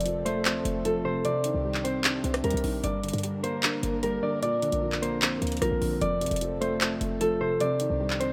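A half-time trap groove at 151 BPM sets a dark, melancholic mood, with an up-front electronic kit of metallic hi-hats, handclaps and rim clicks over a punchy, tight 808-style bass whose sine tone carries a noise layer, a fast attack and a decaying tail. A ringing, fingerpicked concert harp carries the melody through a low-pass filter and delay, and a mellow, intimate grand piano with audible action noise and deep bass lays the accompaniment through a similar filter. Bowed chamber strings sustain soft, sul tasto chords with vibrato in the background over an F, Cmadd9, Gm, Bbadd9 progression, all in a rough home-demo mix with small room ambience, cut from a longer piece.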